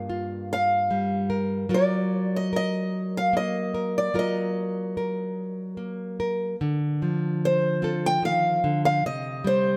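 In a straight 3/4 at 74 BPM, this short cut from a longer acoustic folk-pop ballad feels hopeful and tender, moving from its opening passage into a new section at 6.6 seconds over chords running from Gm7 through Ebmadd9/Gb to Dm7 and Cm. An old ladder-braced acoustic guitar, dark and boxy with audible finger squeak, carries the picked melody up front, while a small, bright fingerpicked nylon-string guitar, also up front, supplies the accompaniment. Both play throughout, set in a moderate plate reverb with a long 3.1-second tail.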